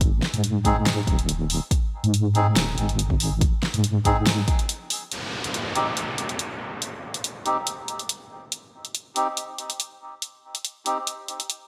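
A deep, chorused wobble bass of sawtooth and sine, a layered electronic kick and an overdriven house kit with a fat snare and hi-hat open this meditative, cavernous deep dubstep excerpt in C minor at 141 BPM with a swung half-time feel, joined by reedy, breathy melodica stabs darkened by a low-pass filter and trailed by dub echo; the bass and kick drop out around 4.5 seconds, a downlifter enters at 5.1 seconds as the kit and melodica carry on, and the mix sits in a lush hall reverb with a bright 1980s-style digital sheen.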